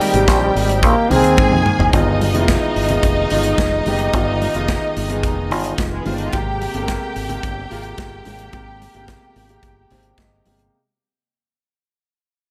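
A breathy, whispered trombone with tube saturation leads this driving, danceable 109 BPM disco excerpt alongside smooth-topped, mellow horn stabs, both stopping by 1.7 seconds. A lush, distant string section, a boxy grand piano with long sustain, an up-front drum kit with a punchy kick and a fill at 1.4 seconds, bright, soft-handed congas and a dark, round fingered electric bass carry on over Abmaj9 and G7b9b13 chords through a fade-out, with a piano fill from 9.6 seconds, all in light small-room reverb.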